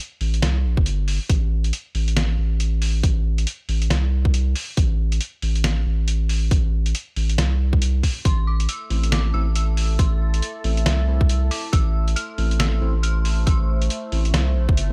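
The sound is dry and gritty, with little reverb, like a hardware recording cut from a longer piece. It's a brooding, meditative deep dubstep groove at 138 BPM in A minor, with a half-time feel, swung sixteenths and a single A minor chord throughout. A deep, thick, saturated sine sub bass sits up front from the start alongside a compressed, pitched-down, gritty sampler-style kit of hi-hat and medium-tuned snare with tape warmth. A tight, layered electronic kick joins at 0.8 seconds, re-recorded in a large room. At 8.3 seconds an eerie, inharmonic FM bell enters high above, decaying through chorus, tremolo and dub echo. Soon after, a resonant sawtooth-and-sine drone with moving overtones swells in slowly under chorus, phaser and its own reverb, while a bright, clean tine electric piano adds echoing stabs in the background.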